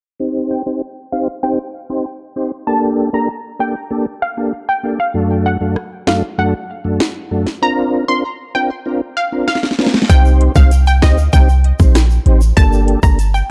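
Bouncy and tough, this dark dancehall excerpt opens with a lightly overdriven tonewheel organ, its key click and slow rotary swirl up front, beneath a round, detuned sawtooth pluck melody carried by chorus and digital delay through a filter sweep, until a tight, metallic-hatted electronic drum kit arrives at 5.8 seconds and, after a fill, a deep, boomy sine 808 bass and a distant tube shaker join at 10.1 seconds over a minor-key progression.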